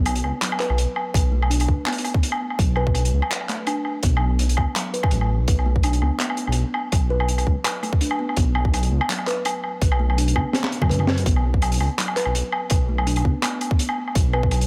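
A dark, detuned sawtooth bass dominates this tense half-time drum and bass excerpt, its deep, rumbling tone beating with a fast attack and sustained notes from the opening second. Set in B minor at 166 BPM with a slight swing on the 16ths, the groove rests on a crunchy breakbeat kit whose high-tuned snare, handclaps, hi-hat, toms and woodblock sound saturated and gritty, with a rolled-off top. A tight, layered electronic kick joins at 1.1 seconds and sits up front alongside the bass. Above them, a kalimba plays mellow, woody arpeggios with short fingertip plucks, bathed in tape echo and a boxy small-room character. A drum fill at 10.5 seconds briefly breaks up the pattern before the brooding groove carries on to the cut.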